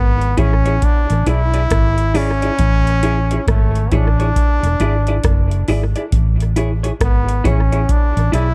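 Sunny roots reggae at 68 BPM in A major with a swung sixteenth feel, where a brilliant, close-miked trombone carries the melody with vibrato and dub echo over a round, punchy muted bass and a booming, up-front analog drum machine with a deep kick, metallic hats and rim clicks that enters at 0.2 seconds, while a clean, compressed electric guitar joins at 0.4 seconds with its own dub echo, all in a dark, dry production cut from a longer piece that moves between Amaj7 and E7.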